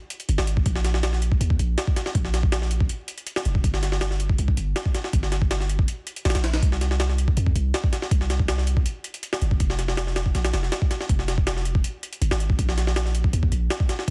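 Nostalgic yet frenetic, this drum and bass jungle excerpt sets a gritty, overdriven, pitched-up sampler kit with thumpy kick, high-tuned snare and hi-hat up front over a deep, sine-like 808-style bass whose long notes decay mellowly, all wrapped in a dense, heavily limited master with vinyl crackle and little reverb.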